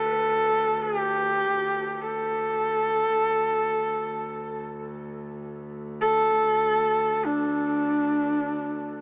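In free time, this short cut from a longer piece of Mongolian folk music sounds proud and galloping, with a husky, focused horsehead fiddle carrying the melody up front, bowed by one player with vibrato, portamento and a smooth top between D4 and A4. Beneath it, a bowed double bass holds a quiet, reedy D2 drone with an airy bow, light vibrato and a period-style gut-string tone, both parts playing through the full 9.0 seconds. A huge ambient reverb surrounds the rich pair, and the whole recording has a worn cassette-tape quality with warbly pitch drift and an AM-radio sound.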